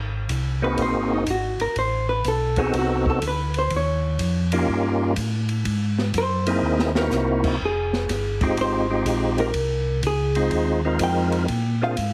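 This soul jazz organ trio cut has a soulful, greasy mood, swinging at 123 BPM in 4/4. A mellow, round tonewheel organ opens at 0.0 s, laying down a clean bass line from the low register through slow rotary speaker and chorus vibrato. The acoustic drum kit follows in a small-room sound, with a punchy kick, high-tuned snare, hi-hat, and dark ride and crash cymbals, plus a brief fill at 6.6 s. A second tonewheel organ, fat and lightly overdriven with key click, third-harmonic percussion, slow rotary speaker, chorus vibrato and plate reverb, carries the melody up front. A picked hollow-body electric guitar with a clean, compressed tone enters at 0.6 s and takes a solo over changes that move from Ab9 through Adim7, Eb9 and C7alt to Fm7 and Bb9. The whole mix sits in a moderate club reverb with a heavily compressed, radio-like sound, and the excerpt is cut from a longer piece.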